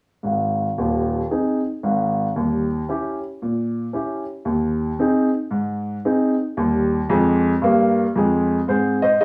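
Stride piano jazz in Ab major at 114 BPM, swung in 4/4 with a playful, exuberant mood, cut from a longer piece. A lone upright piano, woody and natural with long sustain, sits up front from 0.2 to 9.2 seconds, ranging from Eb1 to Eb5 through a brief passage of Ab, Eb7b9, Ab/Eb and Eb that settles back on Ab. The instrument is tuned slightly below standard pitch and heard in a small room with moderate studio reverb.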